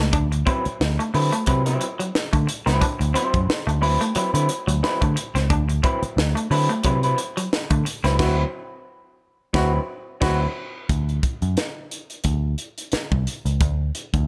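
A funk groove at 89 BPM in 4/4 struts along with a light swing on the sixteenths, sitting in D mixolydian over a single D13 chord, and this short cut from a longer piece feels energetic from the first beat. A crisp fusion drum kit with a high-tuned snare, punchy kick, hi-hat and crash sits up front in a small, pumping room alongside a vintage muted picked bass that sounds dark, round and foam-muted. A clean, bright, twangy electric guitar plays the riff until 8.2 s, while a second electric guitar through a small old amp adds slightly broken-up, lo-fi accompaniment with spring reverb. At 8.2 s the band hits an accent and a clear trombone enters on a single scooped F#4 with light vibrato and slapback echo, holding a second line until 10.4 s. After the harmony drops out at 10.9 s, the bass and drums carry the final stretch to 14.3 s, all wrapped in a small room ambience.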